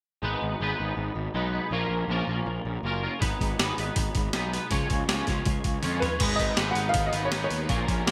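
A twangy, clean electric guitar riff and a punchy fuzz bass open this restless, moody indie rock excerpt, up front in a bright 1980s-style digital production with light reverb. At 3.2 s a compressed, gritty boom bap drum kit joins with a thumpy kick, high-tuned snare and gated reverb, and a drum fill leads into a new section at 6.2 s. Just before it, a woody upright piano melody with delay enters at 6.0 s, and in the new section a crunchy overdriven guitar riff with analog chorus sits in the background.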